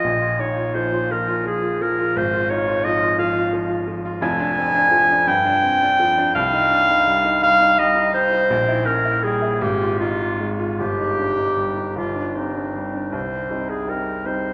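A distant, roomy clarinet sings a melancholic, solemn romantic melody between Eb4 and Ab5 over a natural-toned baby grand piano's long-sustaining accompaniment reaching down to F1, both heard from the first moment in a slow, rubato 6/8 at about 50-59 BPM in dotted quarters, moving from F minor into C minor at 4.2 s, and bathed in a church reverb with a 3.7-second tail, in this excerpt from a longer classical piece.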